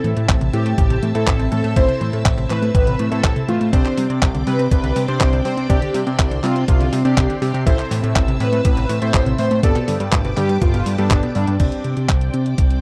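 Dry and close, with the intimate feel of a 1970s studio, this short excerpt of playful, romantic Italo disco moves at 122 BPM in a straight 4/4 in C major. A thick, bright unison lead carries the melody with vibrato, lush chorus and tape echo, and it drops out at 11.6 seconds. Beneath it, a mellow, full-bodied string machine holds slow-blooming chords with ensemble chorus, while a punchy unison pluck spins arpeggios through tape echo in the background. A clangy vintage electric grand piano adds low-pass-filtered stabs that get a filter sweep from 11.6 seconds to the end. The fat, sawtooth analog bass sits up front over a thumpy, tape-tinged electronic kick, joined by a detuned 8-bit drum machine playing crash cymbal, handclaps and hi-hat. The harmony moves from Am to Csus2, back to Am, then Gadd9, settling on Csus2.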